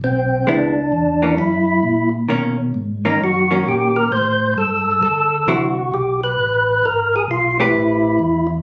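Captured on a phone in a room with club reverb, this soulful, greasy swing jazz cut from a longer piece puts a fat, lightly overdriven tonewheel organ up front on melody, colored by slow rotary speaker, chorus vibrato, key click, third-harmonic percussion and plate reverb, while a round, dark second organ with its own slow rotary and chorus vibrato carries the bass and a clean, compressed hollow-body electric guitar enters at 0.5 seconds to accompany through a run of extended jazz chords.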